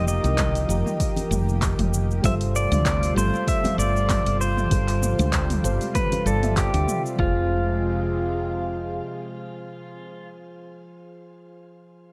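A lightly swung sixteenth-note groove in 4/4 drives this wistful, relaxed sunset chillout excerpt. A punchy, overdriven electronic kick anchors a layered deep house kit of handclaps, hi-hat, shaker and toms, with very quiet, hard-handed congas adding a bright acoustic touch from a small room. Underneath, a woody fretless electric bass sits up front with a dark, round, hollow-body tone. Soft, mellow electric-piano-like synth keys with chorus and delay share the harmony with a lush, thick, detuned unison pad that hangs in the background, shimmering through chorus and phaser. On top, an up-front pedal steel guitar carries the melody with clean, compressed fingerpicked slide lines and volume swells, trailed by delay and a shimmer reverb. The suspended ninth chords give way to a minor chord at 7.2 seconds, as the drums fall away and the keys linger alone until 12.1 seconds.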